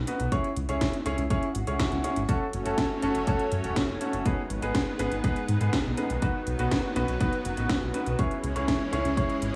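Melodramatic and bittersweet, this italo disco excerpt pairs a round, deep analog bass and a punchy, up-front electronic kick with a house drum kit of cracking gated-reverb snare and metallic hats, while brilliant baby grand piano stabs ring through digital delay, a faint electronic swell sounds in the background at 1.5 seconds, and a lush, thick detuned unison pad with chorus enters at 2.3 seconds over a C#m, F#m, G#m, B progression, all set in a small room with light reverb and vinyl crackle.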